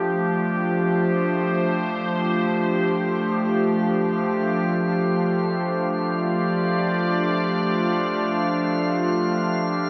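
Heard through the haze of worn, warbling cassette tape with warbly pitch drift and a wet concert-hall reverb, this reflective, melancholic ambient passage in D minor floats in free time and is cut from a longer piece. An up-front, full-bodied wavetable pad holds sustained chords that evolve and morph with a vintage, chorused character. A quieter, glassy texture of drifting overtones fades in across the full 9.9 seconds as the harmony rests on Dm7 before shifting to an open G7 at 9.3 seconds.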